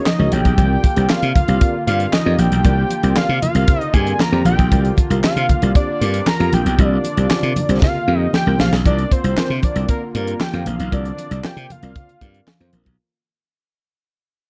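A straight 4/4 groove at 116 BPM drives this danceable, funky excerpt of early-eighties boogie funk, built on a tight funk drum kit with a high-tuned snare, tight kick, hi-hat and handclaps sitting up front beside a bright, growly, punchy slap bass. Bright, compressed congas with a thin-skinned, saturated tone sit in the background. A tine electric piano, worn and slightly out of tune and heard through a combo amp with ensemble chorus, plays accompaniment over chords moving from Ab9sus4 to C9sus4. A very quiet, shimmering pulse-width pad with a slow attack holds detuned, retro sustained chords beneath. On top, a fat, dark analog lead with a sub octave, vibrato, chorus and slapback echo carries the melody with a warbling, vintage character. The dry, close studio sound keeps every part present; a drum fill arrives at 7.8 seconds before the track fades out from 8.9 seconds to 13.0 seconds.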